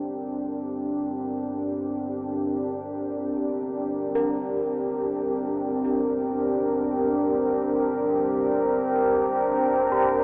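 Dark ambient drone in free time and G minor, tuned to A4 = 438 Hz, with an ominous, cavernous mood. A deep, full-bodied pad of detuned sawtooth unison holds a sustained G minor chord up front, over a nasal, evolving analog drone under lush chorus and a filter sweep, while a bronze singing bowl fades in from the background with a ringing, slowly beating tone. At 4.2 s, gamelan-type bossed gongs add round, metallic arpeggios through tape echo, all set in a huge reverb with a cassette and telephone-like colour in this fragment of a longer piece.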